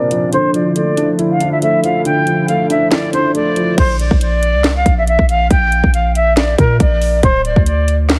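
A half-time trap groove at 139 BPM in 4/4 drives this brooding, melancholic hip hop fragment, with an electronic kit up front: hard-clipped kick, sharp snare, metallic hi-hats, handclaps and crash cymbal. Over it, a breathy silver concert flute carries the melody throughout, its distant, slightly unsteady straight tone and soft attack shaded by a low-pass filter. In the opening seconds, a felt-muted upright piano plays intimate, mellow accompaniment with audible action noise, beside an airy, detuned sawtooth pad holding sustained chords through chorus and a low-pass filter. A filter sweep runs across this first part, over a Dmadd9 chord. At 3.8 seconds the harmony moves to Bb and a deep, boomy 808-style bass enters, a sine with a noise layer, a fast attack and a decaying sound, before the chords fall away at 7.2 seconds. Light reverb and digital ambience surround a heavily compressed, radio-like sound.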